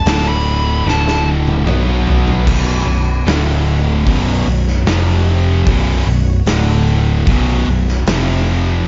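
Heavy and brooding, this stoner and doom metal passage, cut from a longer piece, moves at a slow 75 BPM in straight 4/4 in B minor, tuned slightly flat. A fuzz lead guitar with a compressed, warm tone, distortion and digital delay opens with a brief solo phrase high in its range, stopping at 1.3 seconds, while an oversized low-tuned acoustic drum kit plays a fill from 0.9 to 2.5 seconds, its boomy kick, dark cymbals and medium-tuned snare sounding gritty and saturated in a pumping big room. Up front, an overdriven fingered bass gives a round, amped low end, and a double-tracked distorted guitar with overdrive drives the riff with a bright, picked edge. Two thick fuzz guitars also play the riff with a dark, picked tone, one very quiet and the other sitting in the background with added distortion. Beneath it all, a very quiet vintage string machine voiced as violas holds sustained sawtooth chords that warble and evolve with ensemble chorus, soft attack and long release, over a dark production in a small room with nothing above 7.6 kHz.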